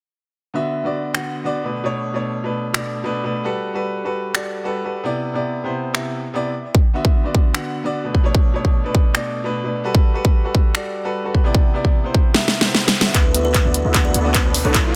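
A half-time 150 BPM groove in 4/4 drives this playful, bright future bass piece in D mixolydian. From 0.5 seconds a clear, boxy grand piano pumps through digital delay, and finger snaps, handclaps, hi-hat and a huge, up-front snare soon join it. A punchy electronic kick enters at 6.7 seconds, and after a drum fill the build-up at 13.1 seconds brings a buzzing, woody kalimba melody, a filter-swept, detuned supersaw chord riff set back in the mix and a deep, boomy 808-style bass, with a very quiet riser following at 13.8 seconds, all under light reverb.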